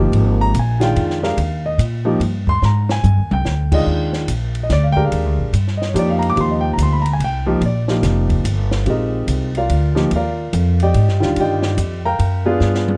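Spiritual and hypnotic, this modal jazz excerpt swings in 3/4 at 144 BPM, with an intimate, up-front grand piano whose action noise is audible as it plays accompaniment alongside a woody, thumpy pizzicato upright bass, while a dry compact cocktail kit with dark cymbals, a high-tuned snare and punchy kick adds fills at 2.6 and 12.6 seconds, and the harmony moves from Abmaj7sus2 to Ebmaj9 at 3.9 seconds in a warm, lightly reverberant mix.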